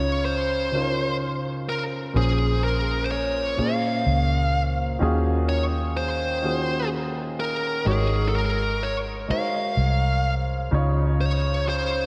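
From the first moment, a distorted, high-gain lead guitar with tape echo sings the melody over a worn, long-sustaining baby grand piano touched with subtle chorus and a round, punchy, foam-muted electric bass, all drifting through a dreamy hall reverb in this slow, sensual R&B excerpt in 6/8 at 42 BPM in Db major, moving from Dbmaj9 through Bbm9, Ebm11 and Ab9sus4 before settling back on Dbmaj9.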